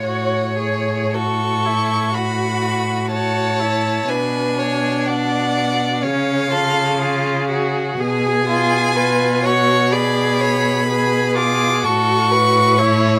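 From the first moment, a string quartet plays a melancholic, yearning slow romantic movement in F# minor at 62 BPM with a rubato feel, as one vibrato-rich violin sings the high melody over a second violin's inner line, a clear, focused viola accompaniment and a bowed cello bass, all in a moderate studio reverb, with harmonies moving from F#m/A through G#dim/B, C# and Bm69 before returning to F#m/A near 11.9 seconds in this passage cut from a longer piece.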